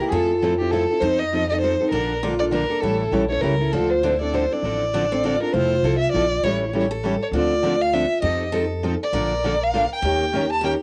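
A close, expressive bowed violin carries the melody from the opening moment, its vibrato and portamento sitting up front, while three bright picked steel-string acoustic guitars join in: one playing a second line with fresh strings and finger squeak, and two picking accompaniment, one of them in the background. All four carry a cassette-tape coloring. This swinging, virtuosic jazz manouche excerpt in 3/4 at 200 BPM begins in D minor and moves to F major at 5.5 seconds, with a woody, thumpy gut-string upright bass played pizzicato underneath in a moderate studio ambience.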